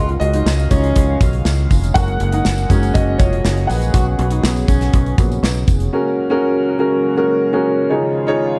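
A woody upright piano with long sustain and dub echo takes the lead in this hopeful, uplifting piano-driven pop excerpt, soloing over a punchy small-room drum kit, growly fingered electric bass, a full-bodied fingerpicked steel-string guitar riff with audible finger squeak, a jingly tambourine in the background and a shimmering, retro chorused pulse-width pad on add9 chords. The guitar falls away at 5.2 seconds and the rest of the band drops out by 5.9 seconds, leaving piano and pad to carry the echo-heavy mix to 8.6 seconds.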